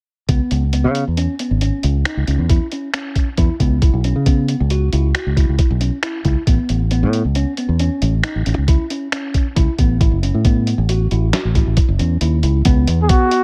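Progressive instrumental band music in a brooding, intricate 7/4 at 136 BPM in C# minor, where a clean tine electric piano plays arpeggios through analog delay over a round, dark fingered bass and a muffled, pitched-down lo-fi sampler-style kit of thumpy kick, snare, hi-hat and finger snaps, moving from C#m7 to Aadd9 in an echo-heavy mix of digital ambience, with kick and snare dropping out at 12.2 seconds just before a breathy, jazz-style trumpet enters with scooped notes at 13.0 seconds as the excerpt cuts off.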